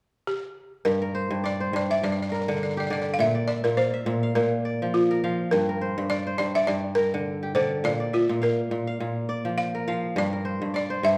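An up-front, fingerpicked kora carries this hypnotic, flowing excerpt of West African traditional string and xylophone music, its bright, crisp arpeggios ringing across its full range. A balafon opens the recording alone at 0.3 seconds, playing the melody with rubber mallets that give it a woody, dry, buzzing tone. The kora joins at 0.9 seconds, and from there the two parts move over an alternation between G minor and B-flat major. The metre is a steady four with a gentle swing on the sixteenths, lending the flow a lilting ease. A recital hall's reverb wraps the pair in a generous ambience, and the piece is cut from a longer performance.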